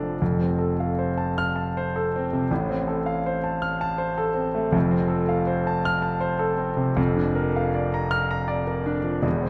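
Warm and lyrical, this brief excerpt from a romantic character piece for solo piano moves at 80 BPM in a rubato 3/4, its concert grand sounding intimate and up front with deep bass, long sustain and audible action noise, spanning E1 to F6 over chords of F, F/A and Bb/F in a wet recital hall reverb.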